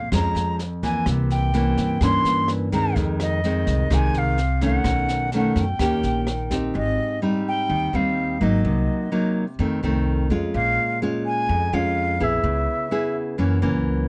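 An airy, tongued silver concert flute with vibrato carries the melody over fingerpicked nylon-string guitar with audible finger squeak, woody pizzicato upright bass and a brushed jazz kit with a boomy kick and high-tuned snare that stops at 6.6 s, in a sophisticated, romantic bossa nova excerpt at 127 BPM that settles into Ab major at 6.7 s, all framed by a dark, warm production and a moderate booth ambience.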